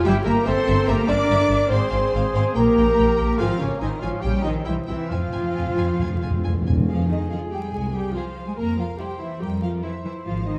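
Lush, distant-sounding bowed double basses sit up front with intense cellos in this restless, stormy excerpt of a quick classical-period symphonic movement, under a smooth violin melody in the background and a focused second violin line. A mellow solo cor anglais and pure, expressive flutes carry further lines over vibrato-rich violas, while dark horns hold chords and a roomy trumpet section plays tight stabs until about 6.6 seconds. Hard-mallet timpani crack through a fill from 5.1 seconds, all set in a moderate scoring-stage reverb with a dark, warm production and vinyl crackle.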